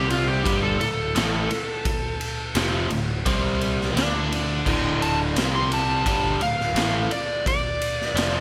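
A straight 4/4 groove from a raw garage drum kit, with a boomy kick, ride and crash cymbals and a saturated sound in a pumping stone room, drives this heavy, gritty blues rock and southern rock power-trio excerpt, where a biting, double-tracked overdriven guitar riff with spring reverb and a growling picked bass with overdrive sit beneath a warm slide guitar solo that runs the full 8.4 seconds over chords moving between Dm, C5 and D5.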